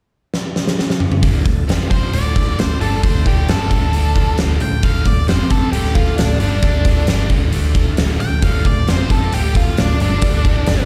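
Heavy and smoky, this blues rock and southern rock power-trio excerpt opens with a huge, punchy arena drum fill from 0.3 seconds, the fat snare sitting up front in an airy big room. At 1.2 seconds a bright, double-tracked distorted guitar riff with slapback echo enters over a dark, round, foam-muted picked bass and a very quiet, gritty tonewheel organ holding sustained chords through a slow rotary speaker. From 1.9 seconds a dark octave-fuzz lead guitar carries the melody in plate reverb, all heard as a live gig through the venue's PA with a recital-hall reverb around the band.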